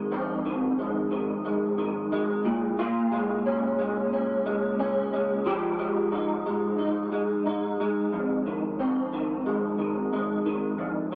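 An electric guitar through a small old amp plays alone from 0.0 to 11.2 seconds in this wistful, hazy indie pop fragment, cut from a longer piece at 90 BPM in F minor, tuned slightly below standard pitch. The dark, slightly broken-up guitar is fingered and sits up front, colored by ensemble chorus, vibrato and tape echo as it moves through Fm7, Bbm7 and Fm9 before returning to Fm7 at 8.1 seconds. The dry, gritty cassette recording carries light reverb and a digital ambience around the lo-fi tone.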